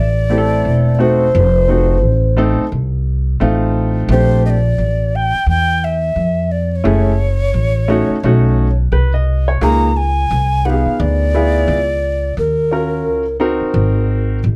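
A dark, warm production with light reverb frames this relaxed hip hop excerpt at 87 BPM, swung on the sixteenths and tuned slightly below standard pitch. A breathy clay alto ocarina carries the tongued, vibrato-laced melody until 13.4 seconds, while a woody pizzicato upright bass on steel strings holds the low end and a vintage upright piano, entering at 0.3 seconds with long sustain and audible action noise, supplies intimate accompaniment. The harmony drifts through lush jazz colours, opening on a rootless Fmaj7 and passing through Bbmaj13, Db69 and Ddim7 before settling on Ab9.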